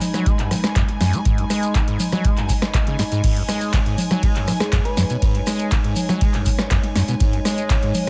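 Set in a digital ambience, this gritty, raw acid house excerpt puts a deep analog kick and a punchy electro drum machine up front, both re-recorded in a large room, with congas, handclaps, snare, metallic hi-hats, rim clicks, ride and crash. A squelchy, resonant saw acid bass with overdrive, subtle chorus and tape echo carries the riff. It pumps under a warbling, nostalgic, lo-fi pad and a biting bowed string section holding a single high note, while a grainy shekere sits close and dry in the background and a round FM lead plays a brief melody from 4.6 seconds.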